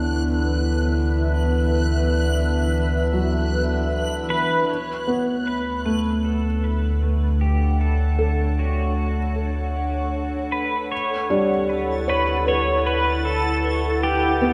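Weightless and luminous, this ambient passage at 77 BPM in D major, cut from a longer piece, drifts on a glassy, chorused FM pad and a felt-muted upright piano whose soft arpeggios, with audible action noise, pass through tape echo, all above a deep, rumbling, ominous drone at D2 that sits up front. A reedy, breathing harmonium holds a drone until 4.8 seconds, while a reversed, granular texture glimmers high above, dropping away at 4.7 seconds and returning at 10.9 seconds as the harmony moves from Dmaj7 to Emadd9/D. From 4.3 seconds a bright, twangy pedal steel guitar, played with fingerpicks and carried on analog chorus and tape echo, takes the melody, fading in alongside the pad while the drone fades out, all soaked in a lush hall reverb that gives the mix a dreamy glow.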